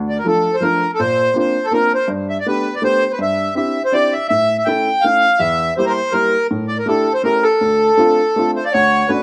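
Dry and close, as if heard outdoors, this nostalgic, whirling musette waltz in D minor moves at 163 BPM with a swung, rubato lilt, as a reedy accordion with slow beating and a slapback echo carries the melody up front over a woody upright piano whose action noise sounds intimately near, until a pure, distant bass bansuri with vibrato and the same echo slips in at 8.5 seconds just before this brief excerpt is cut off.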